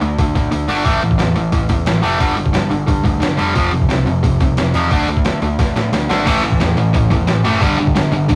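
A distorted electric guitar opens this raw, angry punk rock excerpt up front, picking an overdriven riff through D5, A5, G5 and F5 power chords. Beneath it, a fuzz-drenched electric bass sits in the background, punchy and picked with its own overdrive. The drum kit has a sampler-style character, compressed, pitched down and gritty, with a thumpy kick and a medium-tuned snare pressed close to the listener. The kick and snare drop out briefly at 0.5 seconds, and a drum fill at 5.6 seconds leads into the arrival of a sludgy second distorted guitar at 6.3 seconds, thickening the riff. A moderate reverb and the rough, rehearsal-room sound give the whole take an unpolished edge.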